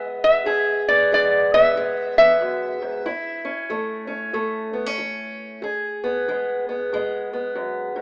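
Acoustic country blues with a swaggering, rollicking swing at 93 BPM in E major, this short excerpt pairs a metallic, nasal lap resonator guitar played with slide and fingerpicks, carrying the melody up front until 3.4 seconds, with a boxy, parlour-style fingerpicked steel-string acoustic guitar accompanying throughout. The chords move from E to A at 3.0 seconds and back to E at 5.6 seconds. Light studio reverb sits over a rough home-demo mix with an AM radio character.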